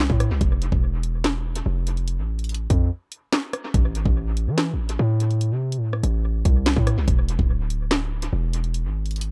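Drill hip hop with an ominous, cold mood, moving in a half-time feel over a steady four-beat metre in this fragment cut from a longer piece. A hard-hitting 808-style bass sits up front from start to finish, its punchy, heavy sine tone carrying a noise layer, with a fast attack that decays after each hit as it ranges from deep lows into the lower middle. The electronic drum kit shares the foreground, pairing a knocking kick and sharp snare with bright hi-hats, handclaps and rim clicks, all given a tape-warm, produced sheen. Dub echo trails the drums, and the mix as a whole leans heavily on echo while keeping reverb to a minimum, so the space feels dry yet haunted by repeats. A short break between 2.9 and 3.7 seconds interrupts the single section before the groove carries on to the end at 9.3 seconds.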